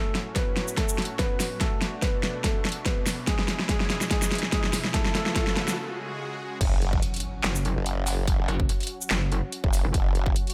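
A lightly reverberant digital space frames this menacing, chaotic excerpt of heavy wobble dubstep at 144 BPM in F# minor, felt in half-time with a slight swing on the sixteenths. It opens as a build-up: a soft, muted upright piano with audible action noise carries the melody through a delay, while a lush, airy supersaw pad holds sustained chords in the background, pumping with sidechain as a low-pass filter sweeps across it. The punchy electronic kick and a tape-tinged dubstep kit with a huge snare, metallic hats, handclaps, shaker and crash sit up front and run a drum fill under the progression from F#m through Bm7, E and Aadd9, with a faint riser adding tension. After a brief break on C#sus4, the drop lands at 6.6 seconds on an F#5 with an impact, as a formant-sweep wobble bass of sawtooth and sine enters with chorus and overdrive. A second, aggressive FM wobble bass with a saturated, metallic edge joins at 7.4 seconds, both low on F#1 and up front. 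A dark, double-tracked fuzz guitar adds a short distorted stab with delay at 8.1 seconds, tucked behind the crushing low end.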